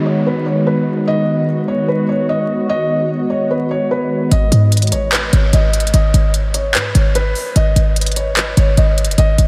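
A warbling, nostalgic tape-like pad with chorus and a faint electronic downlifter open this melancholic, hard-hitting half-time trap excerpt, joined almost at once by a soft, felt-muted upright piano melody with tape echo, before a punchy sine-toned 808 bass and a crisp-hatted trap kit with handclaps arrive at 4.3 seconds as the pad drops out, all within a dreamy, reverb-soaked mix dusted with vinyl crackle.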